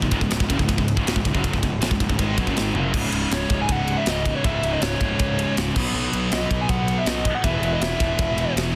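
This dark, epic heavy metal excerpt opens with a scooped, high-gain guitar riff up front, a compressed distorted guitar riff in the background, a growly fuzz bass, and an acoustic drum kit with bright cymbals, a medium-tuned snare and a tight kick, all moving through C#5, B5 and E5 chords. After a drum fill at 2.8 seconds the next section begins, and at 3.3 seconds a dark, smooth overdriven lead guitar enters with a high melody trailed by digital delay. Small room ambience and a dense, heavily limited modern master keep the sound thick and forceful.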